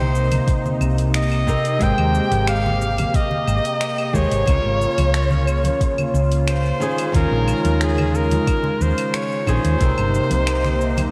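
Soaked in a lush hall reverb, this dreamy, sunny chillout excerpt has a smooth, unhurried feel. A clear, punchy flugelhorn with vibrato carries the melody up front through analog delay, over fingerpicked flamenco guitar on acoustic strings, a thick, airy detuned sawtooth pad with chorus and phaser holding sustained chords, and a dark, round hollow-body electric bass. Underneath, a tape-warm R&B kit of cabasa, claves, finger snaps and hi-hat mixes with hard-handed congas in the background and a soft electronic kick that drops out at 9.9 s, while the chords drift from Cm7 through Abmaj9, Db6 and Eb9sus4 back to Cm7.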